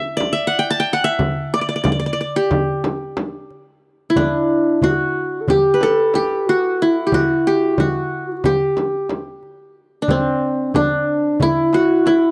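Festive and warm, this short cut from a longer Turkish makam ensemble piece moves in a straight 9/8, led up front by a bright-edged qanun played with fingerpicks, its triple strings ringing across the melody. A crisp metal-shell darbuka struck with hard hands sits beside a deep, saturated frame drum. At 4.2 seconds a very quiet, breathy clarinet joins as a second line with an intimate, jazz-style voice of scooped notes and vibrato, all captured in a dry, close 1970s-style studio sound.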